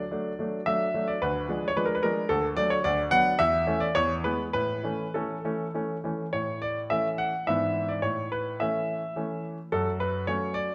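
Graceful and playful, this brief excerpt from a classical-period piano sonatina moves in a lilting triple metre with a supple rubato feel. A solo grand piano, clear, worn and up front, plays throughout, ranging from deep bass notes to a bright upper register. A generous recital hall reverb surrounds it, and a new section begins at 6.3 seconds.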